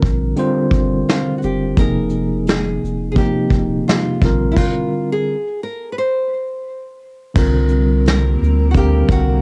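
A tine electric piano sits up front in this nostalgic, reflective lo-fi hip hop excerpt, its clean tone colored by cassette tape, over a deep, round dub sub bass and a vintage kit played with brushes, with dark cymbals, a punchy kick and a rolled-off top. A full-bodied, fingerpicked nylon-string guitar carries the melody with audible finger squeak, and the arrangement breaks for a stop from 4.6 to 7.4 seconds. A blurred granular cloud pad enters in the background at 7.9 seconds, all set in a lightly reverberant home cassette sound with a gentle swing.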